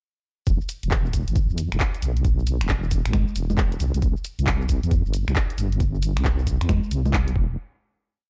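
A deep, wobbling sawtooth bass with chorus, a gritty, overdriven four-on-the-floor kick and a tape-warm garage kit of shaker, closed and half hats, snaps, high conga and claps all arrive together at 0.5 s, dropping straight into a sunny, soulful two-step UK garage groove with a swung feel. The up-front, syncopated bass line sits low beneath the compressed, thumpy kick, while the kit's layered, skipping hats and rims dance around them, both drum parts touched by studio reverb in an otherwise dark, dry mix. The drop runs to 7.6 s before a final hit closes the piece.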